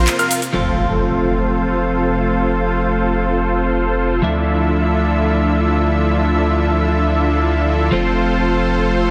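A huge, detuned supersaw riff with dub echo and a low-pass filter sweep leads this anthemic, euphoric festival progressive house fragment in free time and F major, carried by a lush, chorused pad, a deep, saturated sine sub bass and a clean, picked electric guitar that enters at 0.5 s, while a house drum kit with metallic hats, handclaps, cabasa and ride cymbal marks a brief break from 0.1 s and a background impact sounds until 2.4 s, set in a moderate concert hall reverb.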